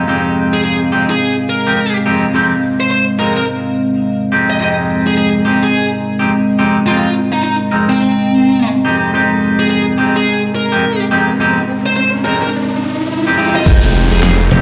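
A moody analog pad holding an Fm7 chord with chorus, 12-bit sampler grit and sidechain pumping opens this swaggering, gritty glitch hop excerpt at 106 BPM in F minor alongside twangy clean electric guitar stabs with tape echo, soon joined by a distorted high-gain lead guitar melody, while a riser and downlifter build from 10.5 seconds until a knocking electronic kick, a pop drum kit with a fat snare and crisp, low-pass-filtered hats, and a swirling phased detuned saw bass land at 13.7 seconds, with a punchy slap bass on F1 arriving at 14.5 seconds, all in a reverberant room over a swung 16th-note groove.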